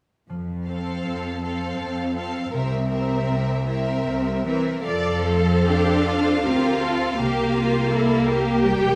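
A wet recital-hall reverb surrounds this tender, lyrical passage for symphony orchestra, cut from a slow romantic movement in triple time that breathes with rubato and uneven beats. A mellow, ringing concert harp opens at 0.3 seconds with fingerpicked arpeggios, alongside a smooth, up-front cello section carrying the bass. At 0.7 seconds the upper strings arrive: a focused first violin section sings the high melody with vibrato, a warm second violin section with a smooth top traces a supporting line beneath it, and a close viola section fills in the accompaniment with soft attacks and expressive portamento. When the music moves into its second phrase at 4.9 seconds, a rich, distant double bass section joins to deepen the low end. The harmony sways gently between the home chord and its dominant seventh, giving the whole a calm, songful rocking quality.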